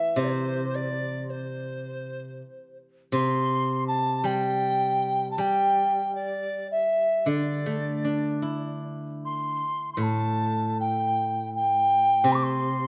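The recording has a dark, warm production with light reverb, and both instruments sit up front. This Chinese traditional piece in C gong mode moves at a loose, rubato 80 BPM in 4/4, carrying a mood that is both festive and pastoral. A large bamboo dizi carries the melody from C5 to D6, its hollow, pure tone edged by the buzz of its membrane, with tongued notes and vibrato. Beneath it, a steel-string zither played with fingerpicks gives silvery, ringing accompaniment from A2 to E4. The two parts play together for the full 12.9 seconds of this short cut from a longer piece.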